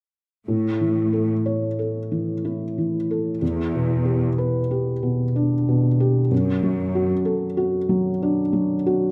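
A felt-muted upright piano and a bowed cello section enter together at 0.5 s in this short excerpt from a cinematic, emotional film score, moving at a rubato 62 BPM in 3/4 with a longing, sorrowful mood. The piano sits up front with a dark, intimate, thick-felt tone, accompanying through a progression of A, Em7 and D/F#, while the lush cellos carry the low bass with focused vibrato until 7.1 s. A wet recital hall reverb surrounds the sound, and the piano carries on alone to 9.1 s.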